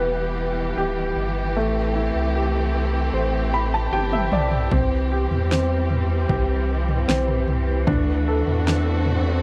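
A clear, woody upright piano opens this tender, hopeful pop ballad at 76 BPM in 4/4, its slightly detuned tone carrying audible action noise and long sustain. Beneath it, a lush, distant string section holds sustained bowed chords with vibrato and expressive portamento, while a round, deep sine sub bass sits up front. The harmony moves from Em to Am7, then to C and Dadd9. The piano plays a fill from 3.1 seconds, and at 3.9 seconds an electronic, overdriven drum kit enters with a fill of its own, then carries on with a punchy kick, fat snare and toms. A very quiet electronic swell arrives at 8.7 seconds, just before this section of a longer piece cuts off. The sound is dry and close, in a 1970s studio style with light reverb.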